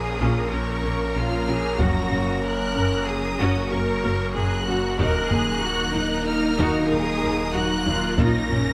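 A growling, distorted saw bass anchors this vast, brooding hybrid orchestral and electronic film-score cue in 5/4 at 94 BPM, where a distant violin section carries the lush, vibrato-laden melody over a second violin line, smooth violas, clear cellos and expressive double basses, while dark French horns and an icy, crystalline glass pad sustain chords, a ringing harp-like synth pluck traces arpeggios, and hard-stick taiko drums enter at 1.8 s, all moving through Bbm, Gb and Ebm in a close, detailed recording with light reverb and a faint mains hum.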